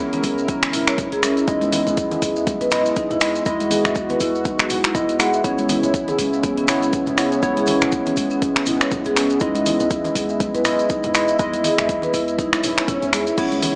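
Up-front detuned analog keys play mellow, chorused stabs with tape echo, and soft-mallet marimba arpeggios and a smooth background pad move between C#m7 and Emaj7, all three sidechain-pumping alongside a boomy sine 808 bass, while an overdriven deep house kit with snaps, hi-hat, toms and crash, a deep electronic kick, hard-hand congas and grainy maracas drive this warm, hypnotic afro house excerpt, heard with light reverb through a small speaker, before an electronic swell appears at 12.6 seconds.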